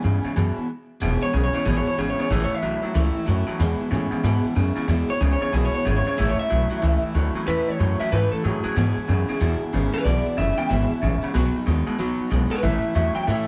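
Rockabilly at a rollicking 186 BPM with a retro swing feel in E major: after a brief stop at 0.7 seconds, a twangy, lo-fi electric guitar through a small old amp takes a solo from 1.0 seconds, treated with vibrato and tape echo, over a dark, compressed, slightly broken-up second electric guitar riff, a full-bodied jumbo steel-string acoustic guitar playing picked accompaniment, and a woody, thumpy pizzicato upright bass sitting up front, all set in light reverb.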